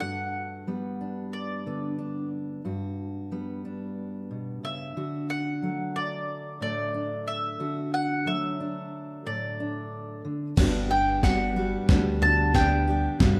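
A woody, up-front mandolin carries the melody over a bright, full-bodied fingerpicked steel-string acoustic guitar in this warm, uplifting indie folk excerpt at 91 BPM, with a picked acoustic guitar with fresh strings sitting in the background, before a gritty, compressed breakbeat-style drum kit with a thumpy kick and high-tuned snare crashes in with a fill at 10.6 seconds alongside a growly pizzicato upright bass for a building lift, all in a rough home-demo mix with light reverb.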